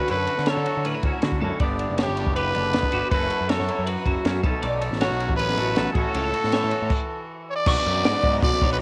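Math rock with a midwest emo tint moves at 158 BPM in a bright, wistful mood, as a raspy, up-front trumpet with analog delay carries the melody over clean twangy guitar, chorused twelve-string arpeggios, a growly fuzz bass and a dark, compact cocktail kit, through a drum fill at 1.4 seconds and a stop at 6.9 seconds before an overdriven, double-tracked garage guitar riff enters at 7.7 seconds on Bmadd9, all in a cassette home recording with light reverb.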